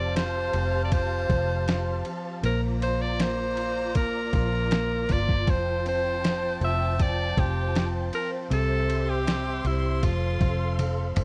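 A steady, straight 4/4 pulse at 79 BPM carries this hopeful, heartfelt pop ballad in F major, heard as a short cut from a longer piece. A lo-fi sampler-style drum kit enters at 0.2 s with a thumpy kick, medium-tuned snare, ride cymbal and toms, its pitched-down, muffled sound pushed into overdrive, and it closes with a fill from 10.8 s. Beneath it, a vintage foam-muted fingered electric bass sits round, dark and punchy up front, while a clear concert grand piano supplies polished accompaniment with deep bass and long sustain. A lush symphonic string section holds bowed chords high above, expressive with vibrato and portamento. Up front, an edgy alto saxophone sings the pop-style solo melody with vibrato and a slapback echo, stopping at 10.8 s as the chords move from Fadd9 through Bbadd9 and back, then to C and F, all in a dry, close 1970s-style studio sound.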